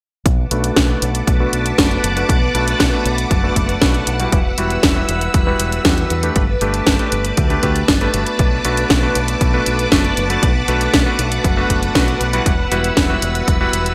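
A punchy, overdriven electronic kick and an up-front house kit with a cracking, gated snare and hi-hat drive this danceable, bittersweet italo disco excerpt in a straight 4/4. Beneath them, a fingered electric bass with an envelope filter holds the low end with a warm, direct tone, while a vintage string machine spreads lush, slow-attack sawtooth chords thickened by ensemble chorus. From 0.5 seconds, a bright, cutting electric grand piano adds clangy stabs through a low-pass filter and delay, its filter sweeping across the whole passage. The harmony moves from Bm7 through Emadd9 and Gadd9 before returning, giving the groove its wistful pull. The drums were re-recorded in a large room, and light reverb and a bright 1980s digital sheen frame this fragment cut from a longer piece.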